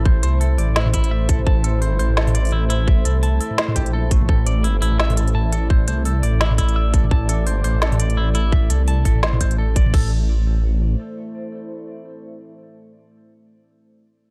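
Cinematic and tense, this half-time drum and bass excerpt rides a deep, rumbling detuned saw bass and a tight, up-front layered kick beneath an overdriven electronic kit with a woody snare and crisp hats, while a bright, twangy clean electric guitar plays arpeggios with 12-bit sampler grit and tape echo over a moody, wave-folded ambient pad that sustains chords with chorus and sidechain pumping, holding on after the drums stop at 10.0 seconds in a dark production.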